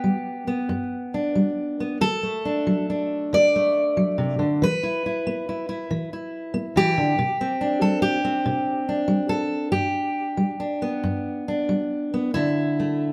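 In a rubato 6/8 lilt at about 46 BPM by the dotted quarter, this gentle, pastoral folk excerpt features a full-bodied fingerpicked steel-string dreadnought acoustic guitar, placed up front and tuned to A4 = 441 Hz, moving from G through D, E5 and Csus2 back to G before resting on Dsus2 at 12.4 seconds, all within a live single-room recording bathed in wet studio reverb.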